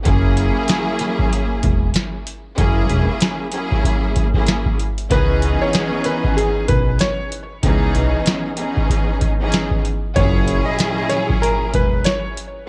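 Lush, bowed symphonic strings with cassette-tape coloring open this dark, reflective boom-bap hip-hop excerpt at 95 BPM with a swung 16th feel, joined almost at once by a woody pizzicato upright bass and an up-front analog drum machine with a deep kick, crisp snare, metallic hats and 12-bit sampler grit, before a bright, slightly detuned upright piano with audible action noise and tape echo carries the melody from 5.1 seconds over F#7 and C#m7 chords in an intimate small-room home recording.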